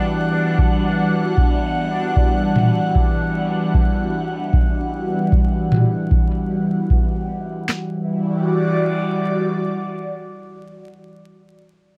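A swung sixteenth-note feel in 4/4 anchors this spacious, deep ambient dub fragment, cut from a longer piece. A dry analog drum machine with a booming kick, crisp snare and handclaps sits up front from 0.6 s, joined at 2.6 s by overdriven electronic toms that carry the sound of a large room. An airy, breathy pad, also up front, holds a sustained Em9 chord built from detuned sawtooth and triangle tones with a noise layer, its slow attack and long release shaped by chorus and phaser. Beneath it, a bubbling texture of random, resonant filter steps on a detuned sawtooth adds chorus and its own built-in reverb until 7.7 s, where the music moves into a new section. The whole mix is echo-heavy, with light reverb and a bed of vinyl crackle.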